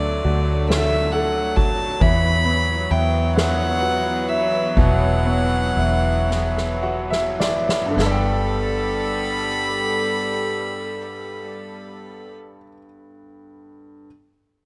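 Heartfelt and tender, this six-eight pop ballad excerpt sets a close, reedy solo violin with a gut-string tone over a brilliant grand piano, floating studio strings, a round, foam-muted electric bass and a soft-mallet drum kit with dark cymbals, slowing from 2.0 seconds as drum and piano fills arrive at 6.3 seconds, before the piano closes alone at 14.1 seconds in a rough home-demo mix with small room ambience.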